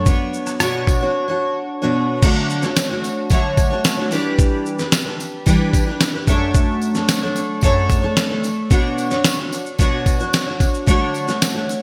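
Acoustic pop with a sunny, carefree mood, this excerpt pairs an up-front, full-bodied, double-tracked picked jumbo steel-string guitar, its finger squeaks audible, moving through chords like Bmadd9, Dmaj7 and G6, with a gritty, compressed, sampler-style soul drum kit of thumpy kick, fat snare, rim click, shaker and crash under gated reverb, while a jingly tambourine sits in the background, all set in a lush hall and a bright 1980s-style digital sheen.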